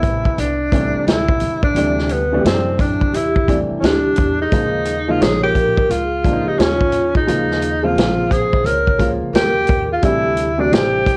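This smooth jazz-hop fragment, cut from a longer piece, opens with a breathy tenor saxophone carrying the melody over a swung 87 BPM hip hop groove in 4/4. The sax has an intimate, whispered subtone, with soft attacks, scooped notes and vibrato, and a cassette-tape coloring. Beneath it, a vintage drum kit with a punchy kick, medium-tuned snare and hi-hat sits up front with a rolled-off top and a small-room feel. A woody, thumpy pizzicato upright bass on gut strings anchors the low end, and a grand piano with short sustain adds warm accompaniment through plate reverb. At 3.1 seconds a vibraphone played with soft mallets joins on a second line, its metallic ringing tone shimmering with fast motor vibrato, while the harmony moves from D9sus4 to Eb9sus4 at 4.5 seconds and returns to D9sus4 at 10.0 seconds, all framed by the hazy character of a home cassette recording.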